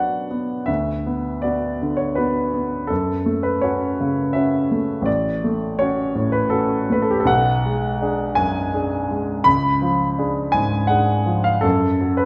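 Bittersweet and passionate, this romantic character piece for solo piano moves at about 83 BPM in 3/4, its pulse stretched with a free, rubato feel. A grand piano carries everything alone from 0.0 to 12.3 seconds, spanning a range from A1 up to B5 and sitting up front in the mix with a clear, present tone. The harmony opens on B minor, moves through F-sharp minor and a half-diminished G-sharp chord, then leans into a tense C-sharp7 flat-nine before settling back on F-sharp minor at 11.6 seconds. A generous reverb with a 1.6-second decay surrounds the instrument, giving it the resonant bloom of a church or concert hall. The passage is cut from a longer piece, so it captures a heartfelt excerpt in mid-flow.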